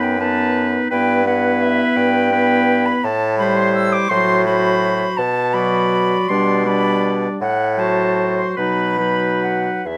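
Solemn and yearning, this slow romantic movement for wind quintet moves in a rubato 6/8 at around 46-58 dotted-quarter beats per minute, and it is heard as a cut from a longer piece. The silver concert flute carries the melody high above the ensemble with an airy, metallic straight tone and crisp attack, though it sits at a slight distance. Beneath it, a close-miked oboe with a clear voice sings a second line, while a bright clarinet supplies accompaniment from the background and a mellow French horn with a smooth top adds inner support. An up-front bassoon anchors the bass with light vibrato, and it holds on with the flute until 10.0 seconds after the other three parts stop at 9.8 seconds. The harmony drifts from B7/F# through Am7 and diminished colours before settling on B major, all within a light reverb.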